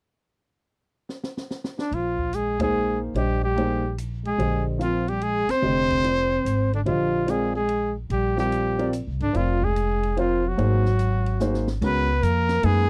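Modal jazz in a swinging 3/4 with an open, spiritual mood, this short cut from a longer piece opens on a drum fill from a kit with dark cymbals, a high-tuned snare and a boomy kick, before a vibrato-laden, scooped trumpet takes the melody up front over a breathy, whispered trombone line and a growly, woody pizzicato upright bass, with grand piano joining at 2.6 seconds amid audible action noise, band accents punctuating the groove, and the harmony shifting from Bb13 to Ab7 and Db7sus4 in a dry, close 1970s-style studio sound touched by light reverb.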